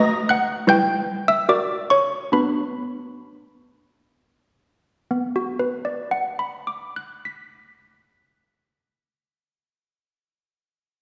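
A classical tune for handbells in B minor, this short passage cut from a longer piece has a solemn, wintry mood in 3/4 time with a straight feel, moving between 60 and 82 BPM. Malleted handbells carry the music alone from 0.0 to 9.5 seconds, spanning G3 to B6 with a bell-like tone, hard clappers and damped, short notes that sit up front. The opening section slows down until 5.1 seconds, passing through B7/A, Em/G and F# before settling on Bm, and a second section follows until 8.0 seconds. A wet concert hall reverb surrounds the bells, and the listener seems placed further back in the room, lending the clipped strikes a distant, chilly glow.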